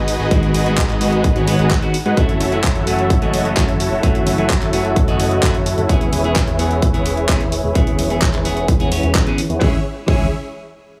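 Festival progressive house in a powerful, anthemic mood, this short cut centres on huge, detuned supersaw chords that pump with sidechain and carry a filter sweep and digital delay until 9.6 seconds, over a fat, wave-folded analog bass, a punchy tape-warm electronic kick, a pop drum kit of handclaps and hi-hat, and a clean picked electric guitar washed in phaser and delay, all set in light small-room reverb as the harmony moves from G#m7 through F#m7 and E6 to land on C#m.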